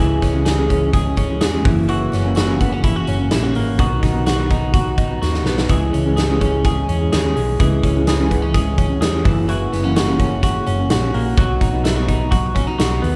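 Jangly indie pop in C# minor at 126 BPM, this restless, bittersweet excerpt cut from a longer piece pairs an up-front, clean, compressed twelve-string electric guitar playing arpeggios with a full-bodied jumbo steel-string acoustic guitar fingerpicking the accompaniment, a dark, round hollow-body short-scale bass, a big rock drum kit with a punchy kick and medium-tuned snare that enters at 0.2 s and plays a fill at 5.2 s, and a very quiet, jingly tambourine, all over a C#m, F#7, B progression in a moderate recital-hall reverb.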